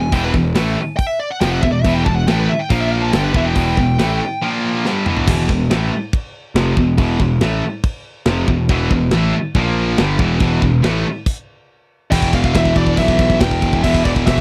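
Heavy metal at 140 BPM in E minor, aggressive and epic, this short dry, close 1970s-style studio cut opens with a smooth overdriven lead guitar solo with tape echo over three bright high-gain rhythm guitars pushed into the background, a dark, round, punchy fuzz bass and a tight, up-front drum kit with bright cymbals, shifts to E phrygian after a drum fill at 5.3 seconds, halts for a stop at 11.3 seconds, then brings the lead back at 12.1 seconds.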